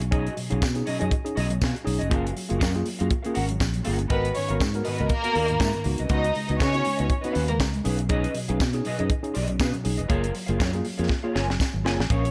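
A lightly swung sixteenth-note groove drives this glamorous, danceable disco excerpt. A tight funk drum kit sits up front with a dry, high-tuned snare, a tight kick and hi-hat, and it rolls into a fill at 11.1 seconds. A fingered electric bass, direct and warm, shares the front of the mix. Behind it, a dark, clean electric guitar with analog chorus and a worn, slightly out-of-tune tine electric piano heard through a combo amp fill in sixth, seventh and ninth chords. A jingly tambourine taps along quietly in the background. At 4.1 seconds a studio violin section enters up front with smooth, vibrato-rich bowing, drops away by 7.6 seconds, and returns briefly at the very end, all set in a small room with light reverb.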